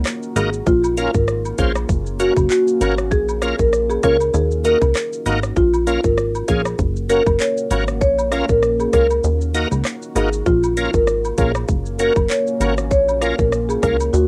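A woody marimba carries the melody over a tough, sultry dancehall groove, joined by a bright, lightly overdriven tonewheel organ with slow rotary swirl, a punchy, plucky analog bass, a tight electronic island pop drum kit with metallic hats, a deep, moody ambient pad pumping in the background, and faint cabasa and woodblock, all cycling through a minor-key progression in a small home-recorded room with cassette tape grit on the marimba, organ, drums and pad.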